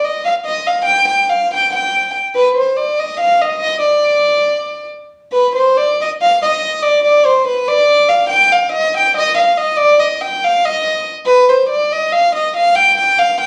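Worn, warbling cassette tape with wavering pitch drift colours this recording, set in a small, wet room with studio reverb. Cut from a longer fiery, virtuosic Balkan folk piece in a straight 7/8 at 283 BPM (eighths), it features a single solo violin, up front and bowed sul tasto, with a rich, airy tone and soft attack that floats between B4 and G5. The violin plays throughout, and its opening phrase returns at 5.3 seconds for a second pass that runs to 13.5 seconds.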